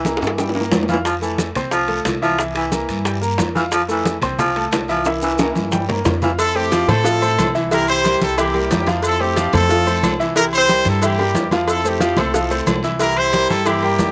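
A brilliant, punchy horn section with slapback echo carries the melody from 6.4 seconds in this sunny, danceable salsa, taking over from a growling, gritty baritone saxophone second line that plays until 6.3 seconds, while a bright upright piano with audible action noise, a dark, thumpy pizzicato upright bass, close, dry grainy maracas and a background bed of hard-hand congas, tight bongos and cowbell, ringing timbales and agogo bells and raspy guiro drive the groove between drum fills.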